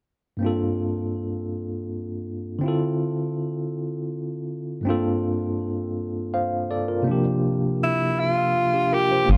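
A worn, slightly out-of-tune tine electric piano opens this yearning, sultry R&B excerpt at 0.4 seconds, lightly overdriven through a combo amp with medium tremolo, moving slowly through Gm11, Dm9 and C7sus4 chords in G dorian at 54 BPM in 6/8, before a breathy tenor saxophone with vibrato and scooped jazz-style notes enters with a short slapback-echoed melody at 7.8 seconds, and a dark, round, up-front fingered dub bass lands a single low G at 9.3 seconds, all in a small, lightly reverberant room.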